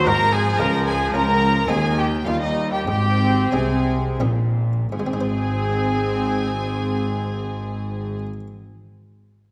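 In a straight 3/4 at 80-112 BPM that slows between 0.3 and 4.9 seconds, this brilliant, festive baroque-style concerto movement in Ab major, tuned to A4 = 436 Hz and cut from a longer piece, sets a mellow, punchy trumpet solo against a high violin section with gut-string tone and light vibrato. A second violin section carries a lower line in the background, a dark, nasal viola section fills the inner accompaniment, and a reedy double bass section joins a warm cello section, the latter set back in the mix, on the bass. An airy, muted buff-stop harpsichord with a lute-like pluck sits behind the strings and rings on to 8.5 seconds, all within a wet recital hall reverb.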